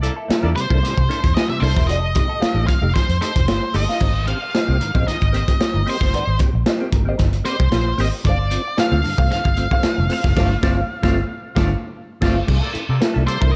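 A dark, lightly reverberant studio sound frames this energetic, playful funk excerpt at 113 BPM, built on a crunchy, saturated breakbeat kit up front and a round, foam-muted fingered bass, with a twangy clean guitar through wah and a mellow tonewheel organ stabbing in the background through fast rotary speaker and chorus vibrato. A fuzzy octave lead guitar carries the melody from 0.6 seconds over chords such as C13, Abmaj7 and G9sus4. Punchy, tight horns return for a band accent at 10.4 seconds before the lead guitar takes a short solo at 12.5 seconds.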